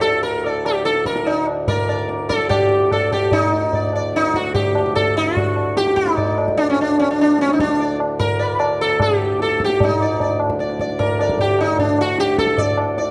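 A dark, warm production with a moderate stage-like reverb frames this serene, radiant Hindustani classical excerpt in raga Bhairav, which gradually speeds up and shifts into a new section at 3.3 seconds. Up front, a bright, buzzing sitar carries the melody, plectrum-plucked with shimmering sympathetic strings. Beneath it, a reedy, breathing pedal harmonium holds a low drone, and a low-tuned tabla with a short ring and a small-room sound provides the percussion.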